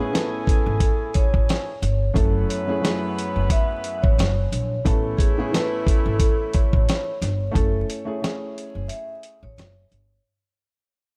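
A gritty, compressed sampler-style drum kit sets a swung boom-bap groove at 89 BPM in 4/4, its thumpy kick, medium-tuned snare and hi-hat sitting up front in the mix. This short cut from a longer hip hop piece in F# minor feels tough and reflective, moving through Amaj7, F#m7 and A chords. A vibraphone played with soft mallets carries the melody with a metallic, ringing tone and slow motor vibrato. Underneath, a dark upright piano with audible action noise and a vintage, cassette-tape character supplies the accompaniment. A pizzicato upright bass enters at 0.7 seconds with a woody, acoustic sound, while a quieter horn section with octave doubling adds smooth stabs through tape echo until 7.2 seconds. A small room reverb and vinyl crackle give the track a dusty feel, and it fades out from 7.6 seconds, with a break beginning at 8.9 seconds.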